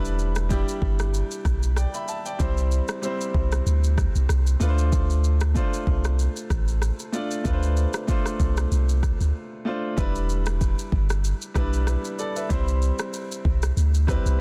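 A relaxed 4/4 groove at 95 BPM, with a light swing on the sixteenths, drives this smooth, mellow afrobeats passage taken from a longer piece. An electronic afro-pop drum kit sits up front, its deep kick joined by rim click and shaker, with soft clipping on the snare. Beneath it a punchy sine sub bass with a pitch-drop attack holds long, sustained notes in the low register, sounding forward and mellow. A clear, slightly boxy grand piano plays accompanying chords over Em7, C and Dm7, then returns to Em7 and C after a short break from 9.3 to 10.0 seconds. The whole is set in a digital ambience with a dense, heavily limited modern master.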